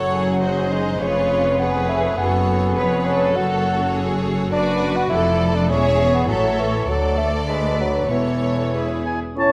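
A warm, up-front bassoon stands out in this cheerful, lively classical-period orchestral passage in F# minor, moving at 102 BPM in 2/4 with a rubato feel. Bowed string sections carry most of it: one violin section plays the smooth melody with vibrato, a second, more distant violin section adds an expressive counterline, and violas fill in the accompaniment. Close, lush cellos and double basses anchor the bass, while the bassoon joins the violas in the accompaniment. The harmony moves through F# minor, D and A before settling on E. Near the close, a clear oboe slips in at 9.1 seconds, and a mellow clarinet, a hollow silver flute and a dark, roomy horn section enter at 9.4 seconds before the passage is cut off at 9.5 seconds. A scoring-stage reverb gives the orchestra a spacious, wet sound.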